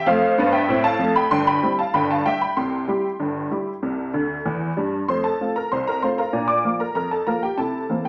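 A detuned, jangly honky-tonk upright piano plays solo and up front through this jaunty, playful ragtime fragment in C major at 96 BPM in a straight 2/4, moving through F, C and G chords to a short fill at 4.1 seconds before a new section opens on F and Bb at 5.1 seconds, heard in a wet studio reverb and cut from a longer piece.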